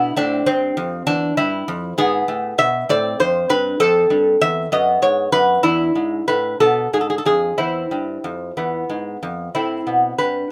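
A classical, baroque-style dance for solo lute in A minor and 6/8, this short excerpt is cut from a longer piece and moves with a grave yet flowing character. The tempo sits around 60-67 BPM counted in dotted quarters, stretched and shaped by a rubato feel. The fingerpicked lute plays alone from 0.0 to 10.5 seconds, spanning E2 to E5, its gut double strings, some doubled at the octave, giving a bright, delicate tone placed up front. The harmony travels from Am through Eadd11/G#, F, B5/F# and E7, then settles via Cadd11/E and E back onto Am at 9.6 seconds. Close, detailed microphones and light reverb keep the instrument intimate and clear.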